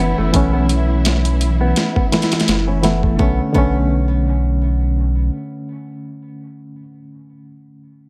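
Melancholic and brooding, this brief, lightly swung trip hop fragment opens with a reedy electric piano carrying tremolo, filtering and tape echo, alongside dark, woody bowed strings and a fingerpicked flamenco guitar with audible finger squeak, while the piano and guitar carry filter sweeps until 3.2 seconds, when the chords move from A to Bm7. A deep, round sine sub bass sits up front, and at 0.3 seconds a gritty, compressed sampler-style kit enters with a thumpy kick, medium-tuned snare and hi-hat, overdriven and touched with studio reverb. The strings drop out at 3.2 seconds and the guitar and drums at 3.8 seconds, leaving piano and bass inside a digital ambience.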